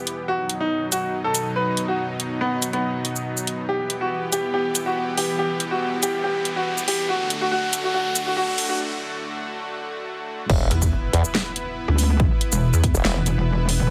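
A clear, smooth grand piano carries the melody with dub echo over a lush, airy supersaw pad that pumps with sidechain, while a dubstep drum kit with a huge snare and metallic hats builds a menacing, half-time heavy wobble dubstep excerpt at 141 BPM in E minor, moving through B, Em and D under a filter sweep and an electronic riser. The piano drops out at 8.8 s for a short break. At 10.5 s the aggressive drop lands on E5 with an impact, a punchy electronic kick and a formant-sweep wobble bass, and a heavy, saturated pulsing pluck wobble bass joins at 10.7 s, both basses overdriven and chorused, all set in light digital reverb.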